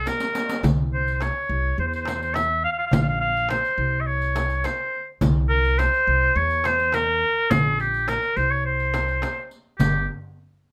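A clear, vintage-toned oboe carries the melody up front in classical style, its light vibrato lending a longing, melancholic voice to this Turkish makam ensemble piece in C makam hicaz at 105 BPM in a straight 4/4. Beneath it, a woody, thumpy upright bass with gut strings plays pizzicato, while a crisp metal-shell darbuka sits in the background, a small, bright frame drum stays close and dry, and a riq's jingles sound distant, as if in a large room. A drum fill opens the percussion at 0.1 seconds, and the whole cut, taken from a longer piece, sits in a moderate studio reverb.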